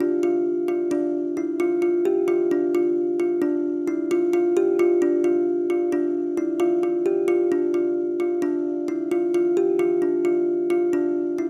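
Contemporary instrumental in a straight 11/8 at 264 BPM counted in eighths, this urgent yet pensive 11.5-second fragment of a longer piece features a solo kalimba ringing woody and bright between D4 and G4, captured up front by close, detailed microphones with light reverb.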